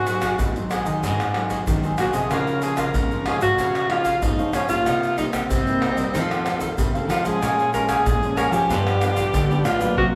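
Samba and choro in a straight four, this short passage is cut from a longer piece and carries a bittersweet, yearning mood. Up front, a breathy alto saxophone sings the melody in a mellow, jazz-styled solo, its notes scooped and shaded with vibrato, set back in a roomy space. A crisp, picked cavaquinho and a fingerpicked classical nylon-string guitar, dark in tone and with an audible finger squeak, fill out the accompaniment. A second nylon-string guitar, thumb-plucked, holds the bass line from the background, while an egg shaker, pandeiro, tamborim and a deep surdo drive the groove with a distant, large-room sound. The harmony moves from Ab7 through Dbmaj9, Cm7, F7 and Bbm7 to G7, all bathed in the long, wet reverb of a recital hall before a band accent lands at 10.0 seconds.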